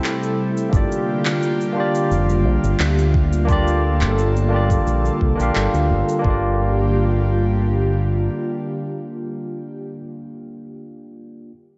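A straight 4/4 groove at 87 BPM drives this smooth sunset chillout piece in G minor: a deep, layered electronic kick joins the produced handclaps and cabasa at 0.7 seconds, and the handclaps and cabasa drop out at 6.2 seconds. The harmony moves from Am7 to Gm7, and a fingered electric bass with an envelope filter sits up front. A barky tine electric piano rings clean through a combo amp with tape echo and a filter sweep, and an airy, breathy pad holds sustained chords with chorus. The dreamy mix is soaked in plate reverb with a soft, rounded top end, a short passage cut from a longer track.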